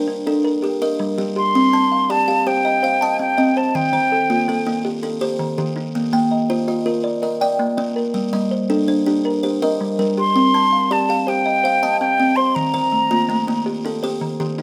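Two kalimbas open together in an interlocking, mbira-style cycle of arpeggios: one buzzing and ringing, thumb-plucked up front, the other a softer, short, band-limited thumbnail pluck with a vintage, woody tone. The music is southern African traditional, trance-like and hypnotic, moving in 12/8 at 109 BPM in C dorian through Gm, Cm, Eb and Bb. An airy, hollow concert flute with vibrato and a crisp attack sings a close, forward melody over the kalimbas from 1.4 to 4.8 seconds and again from 10.2 seconds, all in a light reverb with detailed close miking.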